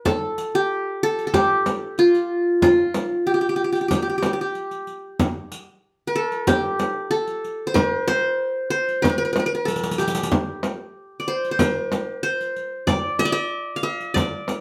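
A bright-edged qanun, plucked with fingerpicks on its triple strings, carries the stately melody up front in this Arabic maqam ensemble excerpt, backed by a hard-handed frame drum, a quieter riq with dark jingles, and a brief drum fill at 9.7 seconds, all in a moderate studio reverb.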